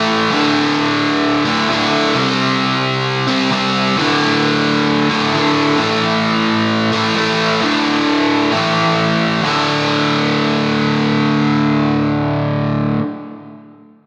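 A biting, overdriven electric guitar, picked, double-tracked and placed up front, plays alone through this heavy, menacing rock excerpt at 132 BPM, grinding through D5, C5 and A5 chords in a lush hall reverb that gives it a big arena sound, before a new section begins at 9.4 seconds.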